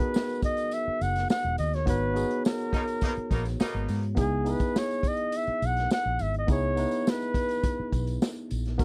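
A straight 4/4 groove at 104 BPM from a dark, tight-kicked vintage drum kit and a jingly background tambourine carries this smooth, bittersweet excerpt of lush 1970s-style soul in C# dorian, where a breathy, mellow flugelhorn sings a jazz-style melody with scooped notes over a worn, slightly out-of-tune, lightly overdriven electric piano moving from G#m9 to C#m9 at 4.2 seconds, a round, foam-muted bass joins at 0.9 seconds, and a clear, distant horn section lands loose stabs from 2.7 to 4.0 seconds within a band accent, all captured in a dry, close studio sound.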